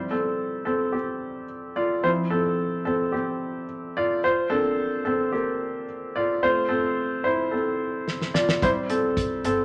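A clear grand piano opens this short excerpt of piano-driven pop, sitting up front with an intimate, polished presence and a touch of audible action noise as it carries the accompaniment in a straight 4/4 feel. The mood is anthemic and uplifting, with the harmony moving from Am7 through Fmaj13 and Bbadd9 to F before returning to Am7. At 8.1 seconds a damped 70s drum kit arrives with a fill of hi-hat, kick and snare, its fat snare, tight kick and rolled-off top giving it a dry, up-front punch. An upright bass slips in at 8.6 seconds, its woody, thumpy gut-string tone tucked in the background. The recording sits in a wet studio reverb, and the passage is cut from a longer piece.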